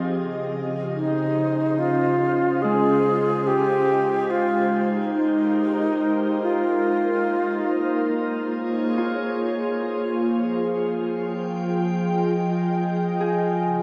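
A glassy, ethereal FM pad opens this serene, reflective ambient excerpt at 71 BPM, holding slow-blooming chorused chords from Dbmaj7 through Abmaj7, Bbm7 and Fm7 under a dark hall reverb, while an airy alto flute with gentle vibrato sings an up-front melody from 1.0 to 8.1 s and a thumb-plucked Celtic harp rings softly in the background with brief arpeggios, returning at 9.0 s, both flute and harp trailing tape echo and shimmer.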